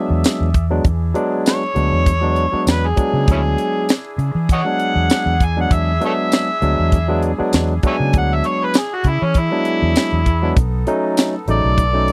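A gritty, overdriven harmonica takes the solo spotlight in this swaggering, rollicking soul blues clip, entering at 1.5 seconds with light vibrato and tongue slaps up front in the mix. Beneath it, a tight funk drum kit with a high-tuned snare, snug kick, hi-hat and tambourine drives a straight-eighth groove at 99 BPM in 4/4, with a slight swing on the sixteenths. A dark, round, foam-muted electric bass sits punchy and forward, while a barky tine electric piano provides clean accompaniment. A clear, smooth-topped horn section holds sustained chords in the background. The harmony rests on E7 in E mixolydian before moving to B7 at 10.6 seconds, all captured in a dry, close 1970s-style studio sound.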